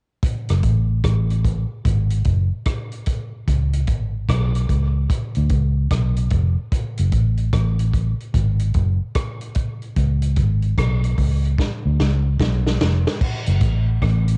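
A vintage drum kit opens this hypnotic, meditative dub reggae excerpt at 0.2 s, with dark cymbals, rim clicks, a medium-tuned snare and a punchy kick, all carrying a cassette tape coloring and a rolled-off top. A round, foam-muted electric bass with transformer saturation joins up front at 0.5 s, anchoring a swung 74 BPM groove in F# harmonic minor. The dry, homemade cassette sound stays dull and close, and a drum fill arrives at 11.6 s before the music shifts into a brief new section.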